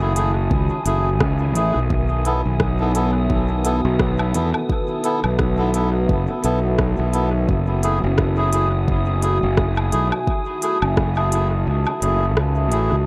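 Bathed in a moderate concert-hall reverb, this hazy, spacious ambient dub excerpt at 86 BPM in F# dorian, swung on the sixteenths, sets a deep, detuned sawtooth pad with chorus holding F#m9 and B7sus4 chords, reedy, breathy melodica stabs sent through dub echo, a growly, fuzz-driven fingered electric bass sitting up front, an airy, wind-like tuned noise texture in the background, and an overdriven organic electronic kit of crisp hi-hat, rim click and woodblock with dub echo, all over a layered, overdriven electronic kick that enters at 0.5 seconds and stops at 11.1 seconds.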